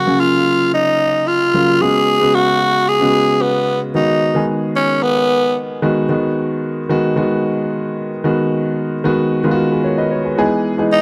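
Romantic, nostalgic pop at 112 BPM in a straight 4/4, where a raspy, growling tenor saxophone with light vibrato and tape echo carries the up-front solo melody until 5.6 seconds and returns briefly at 10.9 seconds, while a polished grand piano with long sustain accompanies throughout over chords such as F#maj7, C#7sus4, G#m7 and Emaj7, all in a dry, close 1970s-style studio sound with light reverb in this short fragment of a longer piece.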